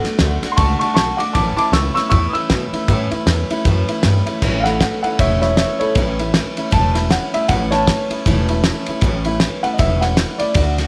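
Rockabilly at 156 BPM in A major, with a rollicking, retro swing on the eighth notes, cut from a longer piece. A warm upright piano carries the melody with a woody, long-sustaining tone and takes a solo from 4.4 seconds, over a bright, full-bodied picked steel-string acoustic guitar, a thumpy pizzicato upright bass on gut strings, and an up-front cloth-damped drum kit with a fat snare, tight kick and dark crash and ride cymbals. Light reverb gives the whole band a small-room ambience as the chords move from D to A.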